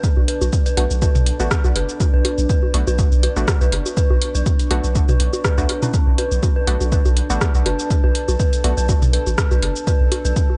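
A dry, echo-heavy mix with a dull top end frames this sparse, cool minimal techno excerpt in B minor at 122 BPM with a light swing, where an up-front punchy kick and a small-room analog drum machine of hi-hat, rim click and shaker with dub echo are joined by a deep sine sub bass from 0.2 seconds, background electronic congas and toms, an eerie inharmonic FM bell riff with analog delay from 0.3 seconds, muted detuned sawtooth dub chord stabs from 0.8 seconds, a very quiet bubbling resonant filter texture, and a moody warbling ambient pad, all resting on a single Bm7 chord.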